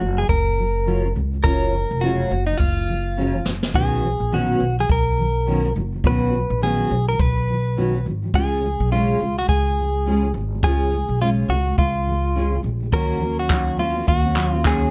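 A relaxed 105 BPM groove in 4/4, with a 60% swing on the sixteenths, carries this easy-going, heartfelt acoustic pop piece in F# major, cut from a longer performance. A jazz brush kit comes in at 0.3 seconds with a boomy kick, a medium-tuned snare and handclaps in a natural studio room, adding a short fill at 3.2 seconds. Up front, a woody pizzicato upright bass anchors the low end, while a double-tracked jumbo steel-string acoustic guitar fingerpicks a full-bodied accompaniment, finger squeaks and all. The melody belongs to a clean, direct-recorded electric guitar, picked with a compressed, scooped tone and bathed in plate reverb. The harmony moves from F#maj7 through Badd9 and C# before shifting to D#m7 at 12.9 seconds for a brief new section, all within a dark, warm production under light reverb.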